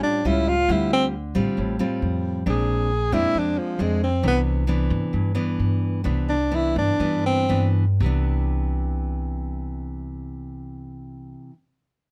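Breezy and relaxed, this short bossa nova excerpt in C major moves at a straight 4/4 pulse somewhere between 115 and 135 BPM. A dark tenor saxophone carries the melody up front as a jazz-style solo, its subtone sound marked by vibrato, scooped notes and a smooth top, before it stops at 7.7 seconds. Beneath it, a full-bodied nylon-string guitar fingerpicks the accompaniment with a deep classical character, sitting up front and continuing to 11.6 seconds. A woody, thumpy upright bass on gut strings plays pizzicato from 0.2 seconds, while the harmony travels from A7b13 through Dm7 and Bb9 to Cmaj9. The tempo slows during the second half of the solo. Close, detailed microphones and very little reverb give the instruments an intimate, dry presence.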